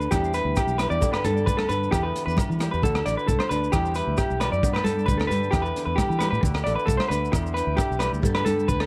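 A straight 4/4 groove at 133 BPM drives this bittersweet highlife guitar band excerpt in E minor, built on a gritty, saturated breakbeat kit with a punchy kick, hi-hat and rim click, plus close congas, grainy maracas and distant, ringing agogo bells in the background. Up front, a clean electric guitar plays arpeggios through tape echo over a fingerpicked flamenco guitar with audible finger squeak and a round, foam-muted fingered bass, moving through Em7, Gadd9 and D chords. At 3.7 seconds a very quiet, flute-like tonewheel organ enters with sustained chords through a slow rotary speaker, and the dry mix carries a layer of vinyl crackle.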